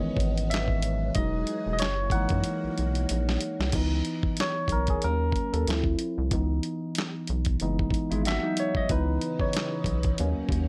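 Soulful and sultry, this neo-soul R&B cut at 93 BPM rides a lightly swung groove in C# dorian, led by a barky, overdriven tine electric piano solo through a phaser, over a rubbery, hollow square bass and a dusty, compressed sampler-style drum kit with a thumpy kick, hi-hat, handclaps and crash, with a drum fill from 2.4 to 3.7 seconds, while a swirling vintage string machine with ensemble chorus holds sustained chords and a dark, clean electric guitar with spring reverb slips in briefly in the background at 8.1 seconds.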